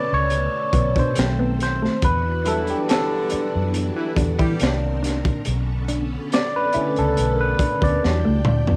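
A hazy, lo-fi home cassette sound with light reverb wraps this short, soulful neo-soul and R&B cut from a longer piece, moving at an unhurried 70 BPM in E dorian with a gently swung 16th-note feel. A barky, lightly overdriven tine electric piano takes the solo from the start, sitting up front through a combo amp with a phaser coloring its tone, while a dark, clean, fingered electric guitar carries a mellow second line beneath it. A lush string machine lays sustained, chorused chords underneath, and a round, foam-muted vintage bass enters at 0.1 seconds with punchy tube-saturated weight. The gritty, muffled breakbeat kit arrives at 0.3 seconds with finger snaps, a tight kick and a high-tuned snare, then closes on a drum fill from 8.0 seconds. A tight, clear horn section adds jazzy stabs between 2.4 and 4.7 seconds over an introspective progression that drifts from Bm9 through Em9 and Cm9 to settle on Em7.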